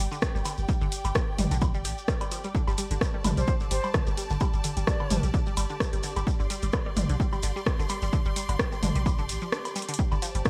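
A squelchy, resonant sawtooth blip pluck drives this sparse, clinical minimal techno piece at 129 BPM, its riff running through phaser and delay and pumping alongside a deep sine sub bass. Around it sit a smooth, bowed studio string section, a punchy, up-front electronic kick, an analog drum machine's hi-hat and rim click, electronic woodblock and toms under gated reverb, and a grainy shekere in the background. An airy silver concert flute with vibrato, 12-bit sampler grit and digital delay surfaces from 3.4 to 5.2 seconds, the kick drops out at 9.5 seconds around a drum fill, and a pulsing triangle texture with chorus slips in at 10.2 seconds, all within a dry, bright 1980s-style digital production with a light swing on the 16ths.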